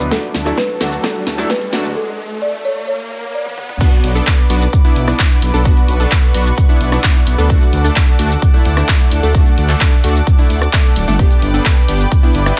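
A build-up opens this euphoric, emotional festival progressive house excerpt, with a drum fill, an electronic riser and a filter sweep on a gritty, airy supersaw stab riff. A bright grand piano with audible action noise sits in the background until 1.9 s, and a woody, soft-mallet folk marimba carries the melody with dub echo until 3.6 s, all over a lush, chorused unison pad and a thick, detuned saw bass that both pump to the sidechain. After a short break, the drop arrives at 3.8 s, driven by a punchy, up-front electronic kick and a big-room dance kit with a huge snare, handclaps, hi-hat, shaker, rim click, toms and crash cymbal.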